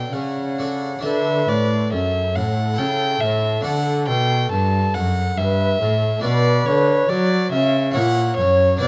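Introspective and flowing, this fragment of a baroque-style classical sonata movement with continuo moves at 70 BPM in 3/4 with a rubato feel in D major, tuned to A4 = 435 Hz, as an airy wooden flute carries the expressive, tongued melody with vibrato alongside a reedy, gut-strung violin's second line, a brilliant, plucked French-style harpsichord with three sets of strings supplying the accompaniment, and a warm, nasal period cello bass, the ensemble heard dry and close in fine detail.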